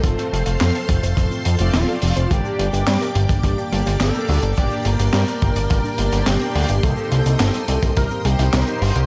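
Driving and cinematic, this synthwave passage at 106 BPM in G minor, cut from a longer piece, sets a smooth, expressive synth lead melody with chorus and tape echo over lush string-machine chords, a very quiet punchy unison pluck arpeggio, mellow brassy synth stabs with cassette-tape colour, a fat, nasal analog bass pumping to the sidechain up front, and a crunchy, gritty breakbeat kit of snare, handclaps, hi-hat and shaker alongside a tight, saturated kick that drops out at 8.1 seconds, all moving through F, G minor and C minor seventh in a small room.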